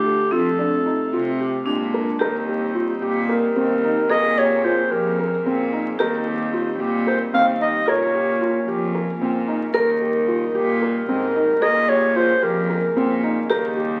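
Shimmering and restless, this fragment of contemporary chamber music in 7/8 at 223 BPM (eighths) in Eb mixolydian sets a mellow, up-front solo clarinet melody over ringing metallic vibraphone struck with medium hard mallets and a slow motor vibrato, background pipe organ chords on a nasal cornet stop with baroque voicing and chiff, a rich, reedy gut-string cello bowing the bass, and dark, intimate felt-muted upright piano arpeggios with audible action noise, the whole heard through a recital hall reverb and the crackle of a very old 78 rpm record.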